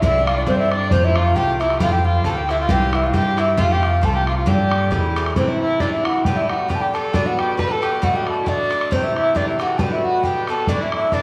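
Driving, dark and lively, this Celtic polka excerpt moves at 135 BPM in 2/4 with a light swing on the eighth notes, settling into A dorian from 5.4 seconds, with the tuning sitting a little under standard pitch. A close-miked baroque flute carries the melody with a pure, woody tone, vibrato and a crisp attack, while a distant, reedy fiddle plays a bowed second line beneath it with gut-string character. An Irish bouzouki supplies picked accompaniment whose metallic double strings ring throughout, and an open, boomy bodhran keeps the pulse from afar. A thumpy, up-front upright bass plays pizzicato in the low register until 5.3 seconds, then drops out as the second section begins. The harmony shifts from chords such as Csus2, F and Gm toward Am, Bm and D6, all wrapped in a wet recital-hall reverb.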